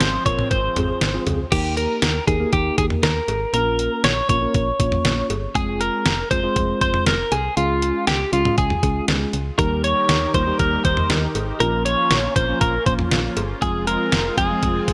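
A steady, straight 4/4 pulse at 119 BPM comes from a detuned 8-bit digital drum machine, its thumpy kick, medium-tuned snare, hi-hat, toms, cowbell and crash cymbal sitting up front with a tape-warm, small-room character. This is a cool, nocturnal synth-pop piece in Bb dorian, cut from a longer track, with a solid FM bass underneath that sounds punchy, round and dark, each note hitting fast and decaying. Out front, a compressed, clean twelve-string electric guitar carries the melody through a tape echo, while a mellow tine electric piano with analog chorus fills in the accompaniment. A lush, airy unison pad, detuned and bright with chorus and phaser, sits in the background during the opening 1.5 seconds, drops out, and returns at 9.8 seconds to hold sustained chords to the end. The harmony moves through Eb, Bbm, Fm and Db under a light reverb.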